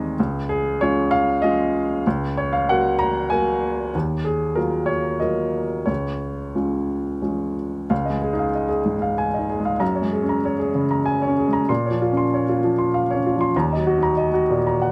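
A rubato piece in three sets a peaceful, hopeful mood in this neoclassical minimalist piano work, cut from a longer piece and tuned slightly sharp at A4 = 444 Hz. A solo upright piano, dark and woody with audible action noise, plays up front and intimate across the full 14.9 seconds, spanning Db2 to Eb6 in a light reverb. The opening phrase moves from Db through Gbadd9/Db and Ebmadd9, and a second section at 7.9 seconds opens on Dbadd9 and passes through Bbmadd9 before settling on Ebm.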